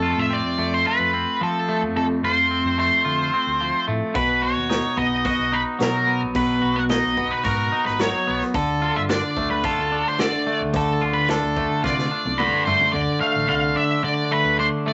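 A fuzz-drenched lead guitar carries this mysterious, hypnotic psychedelic rock excerpt from its first moment, its dark, distorted melody sitting up front over a bright, clean twangy guitar riff shimmering with harmonic tremolo. A round, amped picked bass anchors the low end at a steady 109 BPM in 4/4, moving through chords of F, B and Dm in D dorian. A vintage acoustic drum kit joins at 4.1 seconds with a punchy kick, medium-tuned snare, hi-hat and toms, its rolled-off top giving it a mellow, natural character. The drums play a fill from 11.8 to 12.9 seconds, then stop as the music shifts to a brief closing passage on a D5 chord. A moderate small-room reverb and a layer of vinyl crackle lend the whole recording a dusty, period feel.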